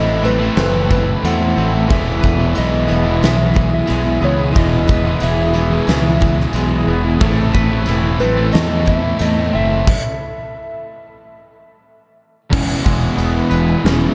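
A growling fingered electric bass sits up front, punchy and overdriven with a bright edge, anchoring this hazy, blissful stretch of shoegaze-tinged dream pop at 90 BPM in E major, cut from a longer piece. Over it, a soft struck FM synth lead carries the melody with a round, keys-like, vintage warble, treated with chorus and digital delay, while a shimmering ambient pad holds ethereal sustained chords with a slow attack, granular texture and its own reverb. Further back, a twangy, scooped clean guitar picks arpeggios through analog chorus and delay, alongside a wall of three riffing guitars: a biting overdriven part washed in reverse reverb, a double-tracked cranked stack with spring reverb, and a dark, thick fuzz guitar. A huge arena drum kit with a fat snare, punchy kick and crash cymbals fills a big room, alongside a jingly, close and dry tambourine. The harmony drifts between Amadd9 and Emaj7 until the band stops at 9.9 seconds, then returns on Emaj7 at 12.5 seconds, all framed by studio reverb in a dark, warm production.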